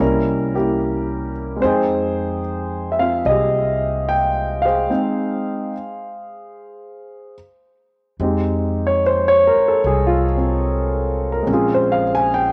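Jazz ballad in F minor at 73 BPM, with a swung 4/4 feel and a smoky, wistful mood, in this excerpt from a longer piece, tuned slightly low to A4 = 438 Hz. A warm, intimate concert grand sits up front with deep bass and audible action noise, moving from C7b9 to Fm9 and later to Bbm7, while a woody, growly pizzicato upright bass on steel strings holds the low end. A stop falls between 4.9 and 8.2 seconds, and the home cassette recording is bathed in a wet spring reverb.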